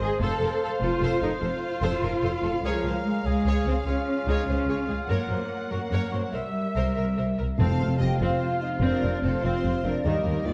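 An up-front, focused double bass section anchors this heroic, triumphant cinematic cue in 12/8 at 98 BPM, beneath a distant, dark cello section with portamento, two lush, vibrato-rich violin sections carrying the melody and a second line, a background viola section, mellow French horns and a soft-attack cor anglais that plays until 7.3 s over chords moving from F through Db, Gb and C7. At 7.6 s the harmony returns to F and a new section begins as an airy flute ensemble, a background clarinet, a tight trombone section, bright trumpet stabs and hard-mallet timpani join, all set in a moderate scoring-stage reverb with a warm production.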